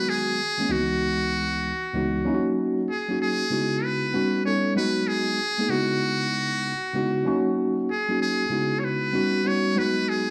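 Hip hop at 96 BPM with a swung 16th-note feel in C# dorian, this cool, nocturnal fragment of a longer piece pairs a worn, slightly out-of-tune tine electric piano, playing up-front accompaniment through G#m9, C#m11, D#m7 and D#7alt chords, with a buzzy, thin trumpet in a metal mute taking a smooth, jazz-style solo melody across the full 10.3 seconds, heard in a small room with light reverb.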